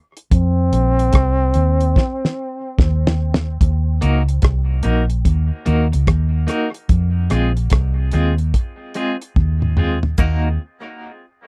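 A round, foam-muted electric bass anchors this heavy, meditative dub reggae excerpt at 73 BPM in Eb dorian, with a swung sixteenth feel. It sits up front beside a damped 70s drum kit with a fat snare, tight kick and dark cymbals, which opens in a break and plays fills, while a clear trombone with vibrato and dub echo states a brief solo phrase near the start. From 4.0 seconds a bright, twangy clean electric guitar enters with tremolo and dub echo over Ebm and Fm chords, and a compressed cabasa slips in faintly in the background at 10.2 seconds, all in a dry, close 1970s-style studio sound.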